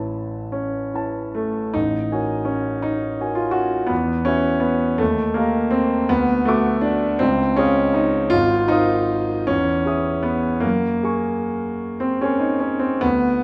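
A warm concert grand piano, deep in the bass and up front, drifts through a dreamy, serene impressionist excerpt in rubato 6/8 at roughly 48-56 BPM, its added-ninth chords gliding from Aadd9 through Eadd9, Dadd9 and Ab69 to Gbadd9 across a range from Ab1 to Eb6, all bathed in a wet recital hall reverb over 13.4 seconds.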